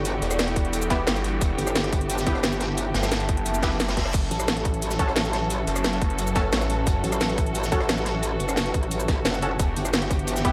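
An overdriven, tight electronic kick sits up front from 0.6 seconds, driving this dark, technical drum and bass excerpt at 176 BPM in a straight 4/4, with a futuristic, tense mood in F# phrygian. Beneath it, a metallic, aggressive FM wobble bass with chorus and tube saturation runs throughout, joined by a swirling, thick phased detuned saw bass with overdrive that plays from 0.2 to 7.0 seconds and returns briefly at 9.6 seconds. The drums layer a produced drum and bass kit with a cracking snare, metallic hats, rim click, shaker and crash, re-recorded in a small room, over a gritty, saturated breakbeat kit set in the background with a rolled-off top. A muted, veiled string section holds lush bowed chords con sordino from a distance with sidechain pumping, while a warbling, nostalgic lo-fi pad adds mellow, chorused texture behind it, and a very quiet, nasal orchestra-hit-like synth stab punctuates from 0.9 seconds. 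The harmony moves from Em to F#m at 4.1 seconds, announced by a faint reverse cymbal, and settles back on Em near the end, all under a light reverb.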